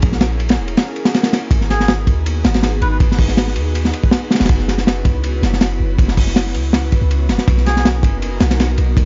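Drum and bass with a jungle edge at 161 BPM in G# minor, this dark, atmospheric excerpt sets a crunchy, saturated breakbeat kit with punchy kick and dark cymbals up front beside a deep, boomy 808-style bass, under an ethereal, detuned pad carrying ensemble chorus, built-in reverb and 12-bit sampler grit through A#m7b5, G#m7, F#7sus4 and Bmaj7, while a reedy, breathy melodica with dub echo appears at 1.7 and again at 7.7 seconds, all within a dry, gritty hardware sound flecked with vinyl crackle and a dulled top end.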